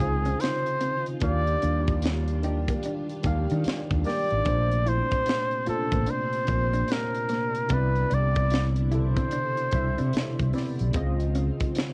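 R&B and neo-soul groove in 4/4 with a swung sixteenth feel, relaxed and warm, cut from a longer piece and carried by a clear, close-miked flugelhorn melody with vibrato, treated with cassette tape and analog delay, over a worn, slightly out-of-tune tine electric piano that is lightly overdriven through a combo amp with analog chorus. An up-front, amped fretless electric bass and a tight funk drum kit with a high-tuned snare in a small room anchor the lush maj9 chord changes, while a dark, clean hollow-body jazz guitar plays a compressed second line in the background. A warbling vintage string machine adds slow-attack sustained chords beneath, the flugelhorn stops at 10.5 seconds, and the whole home cassette recording sits in light reverb.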